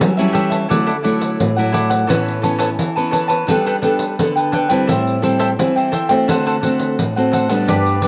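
A straight 4/4 pulse at 86 BPM carries this festive, joyful samba and choro fragment, cut from a longer piece and set by a soft-handed, jingly pandeiro that sounds as if played in a small room. A classical nylon-string guitar, fingerpicked on fresh strings, gives a warm accompaniment from the background throughout. A second, bright nylon-string guitar sits up front with a fingerpicked bass figure that lasts only until 0.7 seconds. The cavaquinho enters at 0.2 seconds, up front, with a mellow yet crisp picked sound. The harmony moves from A7 through Dadd9, Aadd9 and Gadd9 to Am7 and D7. The acoustic instruments sit in a wet spring reverb, and the two accompanying parts carry a cassette tape colour that suits this home recording on cassette.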